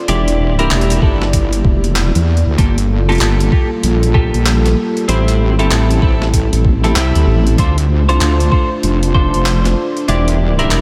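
Funky and playful, this glitch hop excerpt at 96 BPM in D minor swings its 16ths over a heavy, detuned wobble bass up front, a moody analog pad holding sustained chords with 12-bit sampler grit and sidechain pumping, clean picked electric guitar stabs trailing a diffuse ambient delay, a gritty boom bap sampler kit with handclaps, hi-hat and a high-tuned snare, a thumpy overdriven electronic kick from 1.0 to 9.3 s, and a nasal vowel-sweep wobble bass that surfaces at 1.6 and 6.5 s, all moving through Em7b5, Gm9, Am7 and Dm7 in a light digital ambience.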